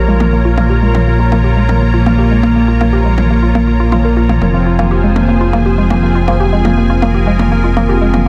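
Melodic techno with a dark, dramatic mood, cut from a longer piece, built over a gritty, saturated synth bass sitting up front while a brassy analog pad punches out stabs and an evolving wavetable pad holds slow-blooming sustained chords above, moving from Bbm to Fm at 4.4 seconds. A woody, wave-folded pluck runs arpeggios through chorus and tape echo with a filter sweep across its whole span, as dry, overdriven electronic toms sit in the background and a barely audible downlifter passes in the first 0.5 seconds. The master is dense and heavily limited with light reverb.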